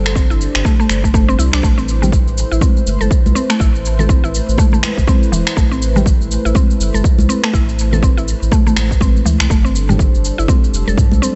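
Afro house in a hypnotic, earthy mood, cut from a longer piece, with a swung sixteenth-note feel over chords that move from Gsus4 to Am and return to Gsus4 at 9.5 seconds. A punchy, overdriven electronic kick sits up front beside an overdriven house kit of finger snaps, shaker and toms. A round sine sub bass, a woody, detuned FM mallet-like pluck playing arpeggios through chorus and delay, and a dark sawtooth analog pad holding sustained chords with chorus all pump with the sidechain, while thick-skinned, high-tuned congas played with soft hands join in the background at 2.0 seconds, and the dry mix stays muffled, topping out at 8.0 kHz.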